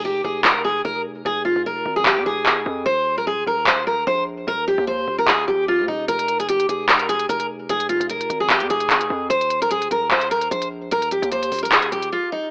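Dark and menacing, this half-time trap and hip hop fragment is cut from a longer piece. A picked steel-string dreadnought acoustic guitar carries the melody up front, its tone bright and full-bodied as it moves between Fm and Eb5 chords. Beneath it sits a distorted 808-style bass, a heavy sine tone with a noise layer whose saturated, fast-attack notes decay into an aggressive low growl. The electronic trap kit comes in at 0.4 seconds, placing crisp hi-hats and handclaps up front with a tape-softened edge. The whole recording has the lo-fi character of a home cassette recording with an AM radio tint and light reverb, and the guitar rings on alone for a moment after the bass and drums stop at 12.1 seconds.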